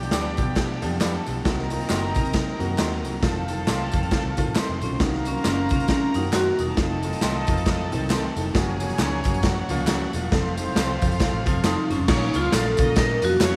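A swung 4/4 groove at 135 BPM drives this uptempo 1960s-style soul passage, led by a raw garage drum kit up front: punchy kick, medium-tuned snare, hi-hat and crash, saturated and gritty in a pumping stone room. Beneath it, a vintage foam-muted fingered electric bass sounds dark and round, while an upright piano supplies woody accompaniment and handclaps, tambourine and egg shaker sit close and dry in the background. A horn section with light vibrato and octave doubling and a twangy, slightly broken-up guitar playing stabs both carry slapback echo, and a distant, reedy chamber violin section adds a gut-string second line. From 4.8 s a vibraphone with slow motor vibrato takes the ringing melody, returning near the close as a very quiet, sparkling glockenspiel joins at 11.6 s. The harmony moves through G7/B, Cm7b5 and F7 toward Gbmaj7 before turning to Bbm at 12.1 s, and a moderate echo chamber reverb frames the driving, passionate mood with studio ambience.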